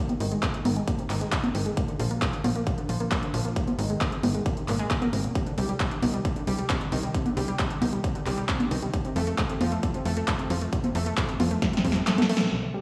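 Emotional and bittersweet, this uplifting trance excerpt at 134 BPM sets a round, detuned, chorused analog pluck playing arpeggios under a filter sweep against a tight, nasal sawtooth sequencer bass with sidechain pumping, a punchy, tape-warm electronic kick, and an overdriven analog drum machine of congas, handclaps, hi-hat, snare and crash, all sounding as if played through a big sound system in a bare stone room, with a drum fill from 11.6 seconds leading to a band accent at 12.4 seconds.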